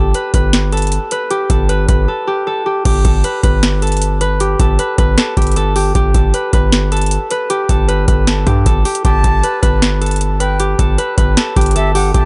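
This is a 12-second cut of half-time trap at 155 BPM in 4/4, driven by a booming analog drum machine with a deep kick, crisp snare, metallic hi-hats and crash cymbal, tape-warm and up front from 0.1 seconds. Beneath it sits a hard-hitting 808-style bass, punchy and heavy with a sine body, a noise layer, a fast attack and a decaying tail, moving between G1 and G2. A fingerpicked concert harp carries the melody in G major from the start, acoustic and ringing in the range G4 to B4, with tape echo on its notes, and the opening Gsus2 colour gives the mood a triumphant yet wistful cast. After a brief break between 2.1 and 2.9 seconds the music moves into a new section, and at 9.0 seconds an airy, reedy concert flute enters in the background with a straight, tongued tone between E5 and A5, also treated with tape echo. The mix is dry, with a dark top end that rolls off above 10.6 kHz.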